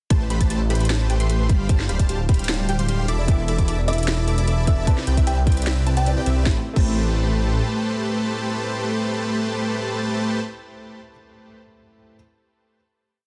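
Dreamy and lush, this half-time future bass piece opens straight into its drop, where a huge, up-front supersaw pumps out pulsing gated chords over a thick detuned saw bass with long gliding notes, a hard-clipped electronic kick, and a trap kit of sharp snare, metallic hats with rolls, and crash. Behind them, a lush unison pluck and a round, tine-like thumb-piano-style synth pluck spin arpeggios, the latter a 6-step loop drifting against the bar. A clear, intimate grand piano with audible action noise joins at 3.3 seconds with syncopated pushes, a sparkling bell-like FM electric piano adds a brief melody from 3.9 seconds, and the whole lands on a final chord at 6.5 seconds in a dense, heavily limited modern master.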